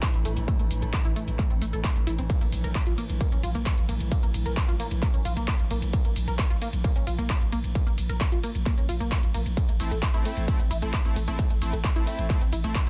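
A distorted, overdriven electronic kick sits up front in this driving peak-time techno excerpt at 132 BPM in A phrygian, industrial and relentless, joined by a growling, buzzy 808-style bass with tube saturation and sidechain pumping and an overdriven kit of handclaps, hi-hat and ride cymbal. A tight, detuned sawtooth sequence with phaser and delay runs nearly throughout, while an eerie, inharmonic FM drone with ring modulation hovers in the background until 9.6 s. At 9.8 s a bright, nasal oscillator-sync polysynth enters with edgy sweeping stabs, all within a dense, heavily limited modern master.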